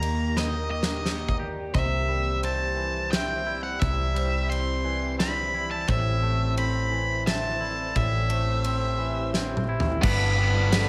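A roomy studio sound frames this hopeful, soaring post-rock excerpt at 87 BPM in 3/4, where a dark, up-front octave-fuzz lead guitar with slapback echo sings over a round hollow-body bass, a big rock kit with a fat snare and punchy kick that fills at 0.4 and 9.3 seconds, twangy clean guitar arpeggios in spring reverb, mellow soft-mallet vibraphone and a pure, organ-like chorused pad in the background, as the chords move from Eb through C and Am to G, where a tight, bright distorted guitar riff enters at 10.0 seconds.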